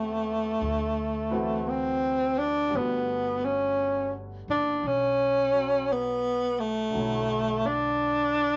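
Jazz ballad at a slow 57 BPM with a swung feel, melancholic and wistful: a mellow, up-front tenor saxophone carries the melody with vibrato, subtone and scooped notes over a warm grand piano set in the background and a woody, thumpy pizzicato upright bass, all heard through a moderate club reverb as the chords move from Am7 and D13 to Gmaj7 and Bm11 in this 8.6-second cut from a longer piece.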